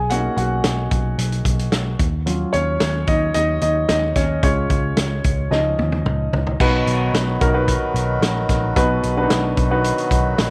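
A light reverb surrounds this dramatic, earnest piano-driven pop piece at 111 BPM in 4/4, where a polished, up-front concert grand takes a solo over a dark, foam-muted picked electric bass and a loose, punchy acoustic drum kit with a rolled-off top. The chords move from Bmaj7 through Ebm7 to Db, and a drum fill from 5.5 seconds leads into a new section at 6.6 seconds. There, a reedy, nasal hand-pumped harmonium enters in the background with warm, breathing sustained chords over the B chord.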